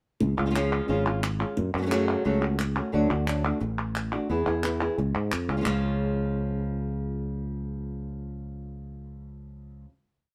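Flamenco, passionate and fiery, at 176 BPM in a straight 4/4: a short, complete piece played live by a small band in one room with light reverb. The flamenco guitar carries the accompaniment up front, its boxy acoustic tone heard in fingerpicked lines and rasgueado strumming with taps on the top. Beneath it sits a sustaining fretless electric bass, just as close, growly and amped, playing a dotted bass figure. Crisp palmas hand claps mark the cycle through the groove, stopping at 5.7 seconds as the band settles onto a final chord. The harmony moves from C# through F#m, D and E before returning to C#, and the guitar and bass ring on until just under 10 seconds.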